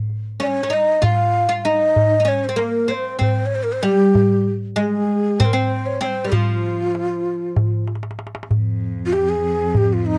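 This dry, close recording has a 1970s studio feel, with the ney, oud and darbuka placed up front. It is a soulful, melancholic Turkish makam ensemble piece in F makam nihavent, tuned to A4 = 438 Hz, moving in 7/8 at 193 BPM counted in eighths with a straight feel. A clay-shell darbuka with natural skin enters at 0.1 seconds, played with soft hands for a large, deep tone. Soon after, a breathy, mellow reed-cane ney carries the tongued melody between Eb4 and F5, with vibrato, an unsteady tone and a distant character, while a fretless, plectrum-plucked oud with woody double strings plays a second line from F3 to F4. A darbuka fill at 7.9 seconds leads into a new section at 8.5 seconds, where a single bowed cello adds a rich F2 drone with a soft attack, expressive vibrato and portamento. The passage is cut from a longer piece.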